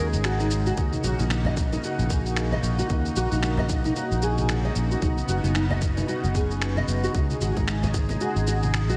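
Swung sixteenths at 113 BPM in 4/4 drive this short cut from a longer organic downtempo piece in Eb minor, earthy and hypnotic in mood. Gritty, sampler-style shaker and finger snaps enter at 0.1 seconds, a tight, tape-toned electronic kick joins at 0.8 seconds, and very quiet congas with soft hands and a bright, acoustic tone arrive at 0.9 seconds. A growly, amped fretless electric bass sits up front with sustained low notes and sidechain pumping, while a full-bodied, fingerpicked nylon-string guitar plays deep classical-toned arpeggios through ensemble chorus and tape echo. Beneath them, a smooth, detuned sawtooth analog pad holds soft-attack chords with a moving notch, chorus and sidechain pumping, moving through Dbsus2, Ebm7, Badd9 and back to Dbsus2. A lush hall reverb soaks the whole dreamy mix.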